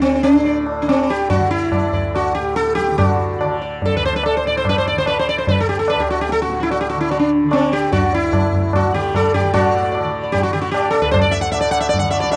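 From the first moment, a sitar, tanpura and tabla sound together in this short passage of Hindustani classical music, cut from a longer piece in raga Khamaj on D. The mood is radiant and serene, set in a straight 4/4 at 146 BPM that gradually speeds up throughout. Up front, the plectrum-plucked sitar carries the melody between C4 and F#5, its round, buzzing tone shimmering with sympathetic strings and trailed by a tape echo. Beneath it, the softly plucked tanpura holds a warm drone from D2 to D3, while the low-tuned tabla rings out from a distant, large-room space. The recording has the dry, close feel of a 1970s-style studio, touched with light reverb, and the music moves into a new section at 9.5 seconds.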